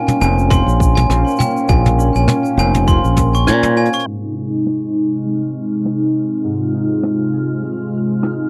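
Warm and pastoral, this swung folktronica fragment pairs a smooth, warbling vintage analog pad holding sustained chords with mellow, ringing concert harp arpeggios that are filtered and echoed, over airy brushed jazz drums. A growly, up-front fingered electric bass, a tight overdriven electronic kick that drops out at 3.3 seconds, and a sparkling, bell-like glockenspiel line with tape echo fill the first half, which closes with a drum fill before the glockenspiel stops at 4.1 seconds. The harp's filter sweeps continue through the second half, where a faint, dreamy reversed granular texture swells in at 6.7 seconds, all within a dry, close 1970s-style studio sound with light reverb.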